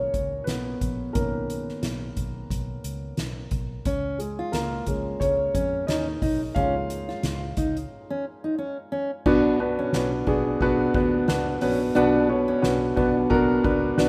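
A dark, mellow upright piano opens this uplifting, anthemic piano-driven pop excerpt, its woody tone sitting up front as it carries the lead from the start through 9.3 seconds. Underneath, a round, foam-muted vintage electric bass and a soft-mallet drum kit with a boomy kick, fat snare, hi-hat, ride and crash fill out the groove at an easy 89 BPM in 4/4, with a light swing on the sixteenths. A fingerpicked steel-string acoustic guitar joins at 3.9 seconds with a full-bodied jumbo riff as the harmony moves from Bmaj7 to C#. After a brief break, the piece turns toward B minor at 9.3 seconds for a new section. Light reverb and a rough home-demo mix give the recording an unpolished, intimate character despite its big-room drum sound.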